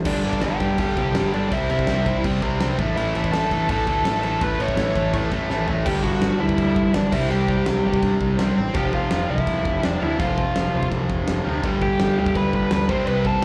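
Two overdriven guitars open this rowdy, rebellious punk rock excerpt, one bright and the other a warm hollow-body sitting in the background, both carrying slapback echo, with a fuzzed, amped bass picked underneath in the background. A dark, high-gain lead guitar sits up front with the melody, over a big acoustic drum kit that sounds smooth, with bright cymbals, a fat snare and a punchy kick. A drum fill at 5.5 seconds leads into a new section at 5.9 seconds, and the whole performance comes across as a live gig heard through the venue's PA, with club reverb and small room ambience.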